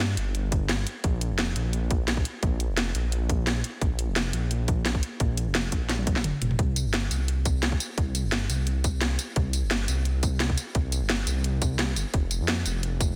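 A dark, detuned sawtooth bass rumbles up front through this short cut from a longer liquid drum and bass piece, its saturated, beating tone sitting deep between F1 and G2 with a fast attack and long sustain. The mood is soulful and melancholic, moving at a brisk 173 BPM in a straight 4/4, tuned to A4 = 441 Hz. An electronic drum kit with a cracking snare, bright hi-hats, tambourine and toms drives the groove, layered and overdriven close in the mix. A tight, overdriven electronic kick joins at 0.5 seconds, and a drum fill breaks the pattern from 5.9 to 6.6 seconds. Light reverb gives the produced sound a touch of space.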